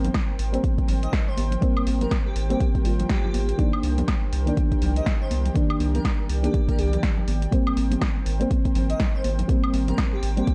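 A dry, close-sounding fragment of moody, hypnotic deep house with a swung 4/4 groove, built on an overdriven, gritty electronic kick up front, a layered kit of punchy snare, hi-hat and woodblock, soft-handed ringing congas in the background, a round, nasal analog bass pumping to the sidechain, dark, full-bodied chorused chord stabs with 12-bit sampler grit and tape echo moving through Abmaj9 and Cm7, a breathy, evolving pad with a slow attack, and, from 1.0 s, an airy, dreamy detuned lead with vibrato, portamento, chorus and tape echo.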